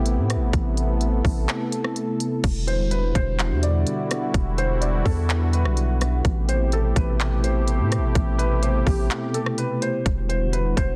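The mix is dense and heavily limited, set in a digital ambience that gives this short excerpt of atmospheric cloud-rap an ethereal, hazy air over a half-time hip hop feel. A vintage, detuned sawtooth pad sweeps and warbles through sustained chords, its resonant filter swell, slow attack and long release thickened by chorus and pumped by sidechain. Beneath it, a deep, sine-toned 808-style bass holds long notes with a fast attack and mellow decay, sitting up front. The electronic trap kit brings a hard-clipped kick, crisp hi-hats, handclaps, rim clicks and a crash, with soft clipping on the snare, while brief breaks arrive around 1.5 and 9.1 seconds. At 2.7 seconds a felt-muted upright piano enters with a soft, intimate melody, its audible action noise heard through a low-pass filter and trailed by digital delay, while the harmony drifts between Am9 and Em9.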